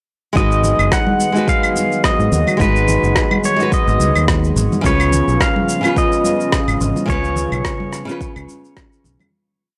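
A twangy pedal steel guitar sits up front in this short, wistful sunset chillout piece, played with fingerpicks, slide and volume swells, and trailing tape echo through a motif-based melody of call phrases. Beneath it, a bright, small-sounding nylon-string guitar is fingerpicked in spread voicings, holding chords with syncopated pushes, while a lush, warbling sawtooth pad with chorus sustains detuned unison chords in the background. A round, punchy fingered electric bass carries a dark, syncopated riff with tube saturation, over a soft, deep electronic kick and a gritty, sampler-style light lounge beat of rim click, cabasa and claves. Band-limited congas played with soft hands join in the background from 0.6 seconds, and the relaxed, lightly swung groove moves from G#m7 to C#7. The dry, gritty recording carries light reverb and transformer saturation, and the piece fades out from 6.3 seconds to its close at 9.3 seconds.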